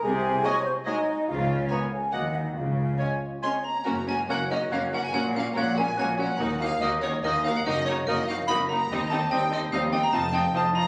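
Cinematic orchestral music in triple metre with a magical, mischievous air, where a rich, focused chamber violin section carries the melody, joined from 3.4 seconds by a dry, percussive xylophone played with wooden mallets, over a darker, woody violin line, an airy, hollow flute, a clear oboe, a close-miked clarinet, a smooth viola section and a bassoon, all set above mellow French horn chords and an expressive cello section and smooth double bass section, the whole ensemble bathed in the reverb of a scoring stage yet captured on a phone in the room.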